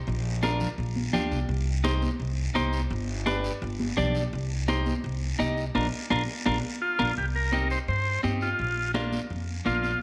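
A passionate, fiery cumbia groove in a straight 4/4 is driven by a woody, thumpy pizzicato upright bass up front, bright high-tuned congas in the background and a raspy guiro, while a clean, scooped electric guitar picks the chords through a moderate echo-chamber reverb, and a buzzy vintage combo organ takes the melody at 6.8 seconds, in the midst of a band accent and drum fill, in this short cut from a longer piece.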